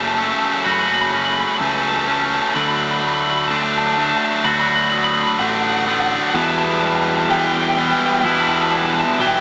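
A brooding, cinematic rock passage at a slow pace, this short cut from a longer piece builds steadily across its 9.4 seconds over F#m7, D6 and Em7 chords. A bright, twangy twelve-string electric guitar carries the melody high up, its clean picked tone coloured by vibrato and a slapback echo. Beneath it, a twangy electric guitar plays fingered arpeggios in the background, also touched by slapback, while an up-front overdriven guitar drives a picked riff. A growling fingered bass, round and punchy, anchors the low end with its own overdrive. At 6.3 seconds a second distorted guitar with a scooped, compressed tone joins with a lower riff and slapback echo, thickening the build. A lush hall reverb wraps the mix in a big arena sound, tempered by a small-speaker quality.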